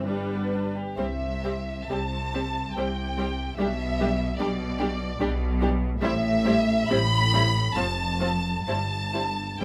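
Serene and warm, this slow romantic classical movement for string orchestra unfolds in a rubato 3/4 at 63-75 BPM in C major: an expressive, up-front violin melody floats over a close, even second violin line, lush vibrato violas, lightly vibrated cellos with a smooth top and a rich bowed double bass foundation, set in light reverb across 9.6 seconds cut from a longer piece.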